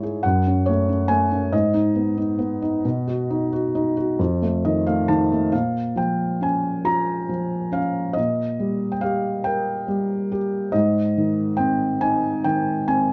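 Unfolding in a rubato 6/8 at 46 BPM in dotted quarters, this reflective, melancholic classical fragment of a longer piece is carried by a solo felt-muted upright piano, soft, mellow and intimate with a thick felt tone set up front in a dark production with moderate studio ambience, moving through F#m, G#m and B before an F7 fill at 4.2 s leads into a Bb dorian passage from 5.5 s over Bbm, Eb/Bb and Ab.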